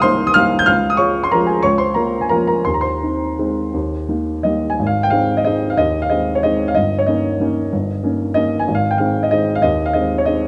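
Closely miked with a moderate recital-hall reverb, this brief, graceful classical piano waltz in 3/4 and A-flat major moves with an elegant rubato between 163 and 199 BPM, its solo baby grand sounding warm, natural and up front with a short sustain across a range from G1 to G6, drawn from a longer piece where a new section begins at 4.8 seconds.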